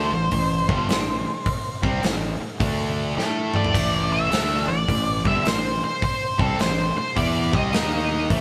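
A dark, fuzzed-out octave lead guitar rides up front over a bright, double-tracked overdriven riff guitar and a growly fingered bass, with a big acoustic drum kit arriving at 0.3 seconds and a punchy kick driving the swung groove. This brooding, smoky stretch of blues rock with a southern rock lean, cut from a longer piece, moves between Am and D5 and sounds like a power trio playing live in one room. A drum fill lands at 3.2 seconds, all within a moderate studio reverb.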